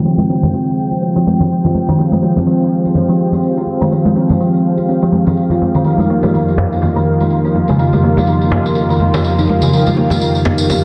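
A hypnotic, spiritual afro house excerpt opens with an up-front, smooth detuned analog pad holding sustained chords, round brassy synth stabs with chorus and dub echo, and a jingly, close tambourine, while a woody, hollow kalimba with 12-bit sampler grit and dub echo plays filter-swept arpeggios over ringing congas, a deep djembe joining in the background at 6.2 s as the harmony moves from Fmadd9 to Ebadd9/F in a lush hall reverb with a dense, heavily limited master.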